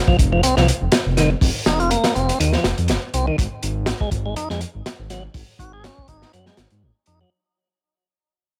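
A faint electronic impact opens this energetic, raw breakbeat fragment at 122 BPM with a swung 16th-note feel, as a lightly overdriven tonewheel organ riff with key click, vibrato, 12-bit sampler grit and dub echo joins a punchy, dark, rolled-off acoustic breakbeat kit and a deep, rumbling detuned saw bass with tube saturation, all sitting in a small room ambience while the whole passage fades out over its 7.3 seconds.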